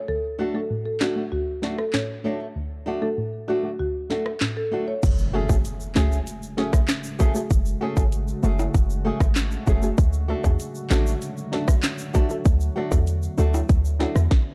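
Sultry and tough, this dancehall excerpt moves at 97 BPM in a straight 4/4 in F# minor, with a dark, warm digital sheen. A woody marimba played with medium mallets carries the melody up front over the opening five seconds, while a soft, round pluck with chorus supplies accompaniment and a fingerpicked flamenco guitar adds acoustic arpeggios with audible finger squeak. An electronic island pop drum kit arrives at 1.0 s with a tight kick, sharp snare, metallic hi-hats, rim clicks, handclaps and crash cymbal sitting prominently in the mix. At 5.0 s an electronic impact marks the shift from D to F#madd9 as a punchy, short 808-style bass with a fast attack enters up front, joined by bright, close tube shaker and timbales played with hard hands. From 6.2 s a deep, moody pad with chorus, reverb and sidechain pumping sustains mellow chords underneath through the end of the excerpt, while the harmony returns to D at 10.0 s.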